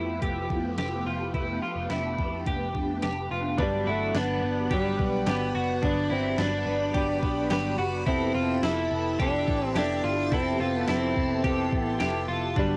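A straight 4/4 pulse at 107 BPM is set by a crisp 8-bit drum machine with a thumpy kick, fat overdriven snare, hi-hat, ride and tambourine, over a dark, round, foam-muted picked bass in the low register. This floating, ethereal dream pop fragment, cut from a longer piece, opens on a swirling, sawtooth string machine holding sustained Fmaj9#11 chords through ensemble chorus and phaser, while a bright, twangy clean electric guitar picks arpeggios beneath a tape-echo haze. At 3.6 seconds the harmony moves to Gmaj7, and an up-front, slightly broken-up slide guitar takes the melody as a second clean guitar, recorded direct and shimmering with tremolo and chorus, adds accompaniment. A very quiet soft-mallet vibraphone rings in from 3.9 seconds with a metallic, mellow vibrato, and the progression returns to Fmaj9#11 at 8.1 seconds. Cassette saturation on several parts and a small, moderate room give the whole a homespun, lo-fi softness.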